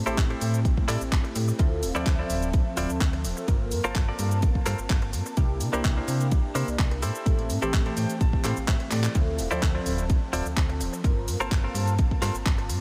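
A punchy, up-front electronic kick anchors this funky, nostalgic filtered disco house excerpt at 127 BPM in D minor, alongside a tape-warm house kit of handclaps, hi-hat and shaker, a snappy slap-like FM bass with a metallic attack and tube saturation, a detuned sawtooth polysynth comp with chorus and phaser, and a bright, twangy clean electric guitar riff roughened by vintage 12-bit sampler grit that plays a fill from 7.7 to 9.2 seconds, with sidechain pumping on the bass, synth, guitar, hats and percussion over light digital reverb and a cycle of Am7, Dm9, Gm11 and C9 chords.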